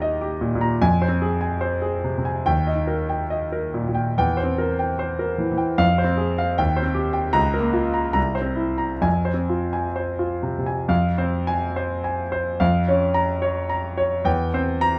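Closely recorded with little reverb, this clear, smooth grand piano sounds vintage and up front, its notes carrying a short sustain. It is a romantic classical character piece for solo piano in 2/4, warm and lyrical, moving with rubato at roughly 64-79 BPM and settling into F minor from 4.2 s. Ranging from C2 to Bb5, the harmony circles through F minor and C7 chords, shifting into a new section at 10.9 s before this cut from a longer work ends at 15.0 s.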